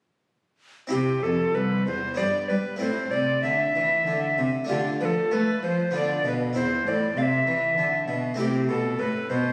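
In a 3/4 at 97 BPM with a flexible, rubato feel, this serene, dance-like baroque-style sonata movement in C major is cut from a longer piece, with all three parts entering together at 0.9 seconds and playing through to 9.5 seconds. An airy, wooden alto recorder carries the melody up front with a crisp, chiffy attack and straight tone, while a full, plucked harpsichord with two sets of strings supplies the accompaniment and a single bowed cello with a rich, reedy gut-string tone anchors the bass in period style. The recording sounds as if captured on a phone in a concert hall, with moderate reverb and compression around the close-miked recorder and cello.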